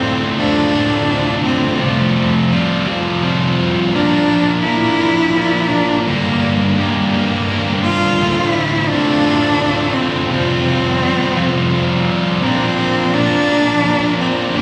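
A thick, bright fuzz guitar sits up front, double-tracked and picked, playing a distorted riff that spans from D2 to Bb4 across the whole 14.6 seconds, with a slapback echo on its tone. Beside it, a single bowed cello carries the melody between A3 and F4, its sound clear, focused and close, with vibrato, a slapback echo and a digital delay. This cathartic, brooding rock passage moves at 56 BPM in 6/8, counted in dotted quarters with a half-time feel, and is tuned to A4 = 439 Hz. The harmony cycles through Dm7, Fadd9, Bb and Gm, then returns to Dm7, Fsus2 and Bb. It sounds like a live gig heard through the venue's PA, with a moderate club reverb and a recital-hall ambience, and it is cut from a longer piece.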